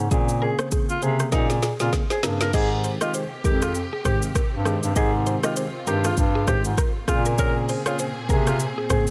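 Afrobeats in Ab major at 99 BPM with a swung sixteenth feel, romantic and joyful, moving from Bbm9 to Abmaj7 and back to Bbm9. An up-front afro-pop kit with deep kick, woody snare and metallic hats drives alongside a roomy, classical-style bass clarinet, while a clean tine electric piano heard through built-in speakers plays accompaniment and a dark, slightly broken-up picked electric guitar riff with delay sits in the background. A raspy, growling alto saxophone with vibrato and delay carries the melody, a drum fill at 1.3 seconds leads into the next section, and a warm bowed string section enters at 2.5 seconds with expressive portamento chords, the whole excerpt sitting in a digital ambience.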